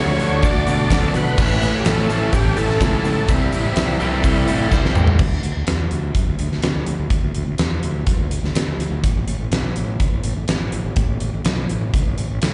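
Classic rock at 125 BPM with a driving, sunny feel, this fragment of a longer piece opens on D, A and C chords. A gritty, overdriven tonewheel organ carries the melody through a slow rotary speaker and chorus vibrato, over three overdriven electric guitar riffs: one crunchy with slapback echo, one biting and double-tracked, and one sludgy. Beneath them sit a boxy parlour acoustic guitar with finger squeak, barely audible vintage string-machine cellos, a close egg shaker and a fuzzed fingered bass, while a huge arena drum kit with a fat snare and punchy kick sits up front. A bright lead guitar with slapback echo and analog delay adds a brief second line from 4.0 s, and a drum fill from 4.7 s closes the opening section at 5.2 s. After that only the bass and drums carry on, unchorded until an Asus2 arrives at 9.0 s, and the recording sounds like a live gig through the venue's PA, with club reverb and a dulled top end.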